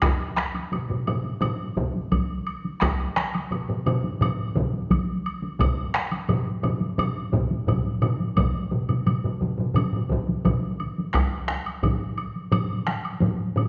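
Powerful and driving, this short excerpt from a longer Japanese traditional taiko piece moves in a straight 4/4, with four taiko ensemble parts struck with heavy sticks and a woody, vintage-toned woodblock running throughout. Two of the taiko parts sit up front, one in a live room and one compressed and saturated, while the other two carry a small-room character; one taiko part drops out at 10.6 s and another at 12.0 s as the music shifts into a new section at 11.1 s. The whole recording is bathed in a wet recital hall reverb and has the worn, warbling pitch drift of old cassette tape, its top end dulled.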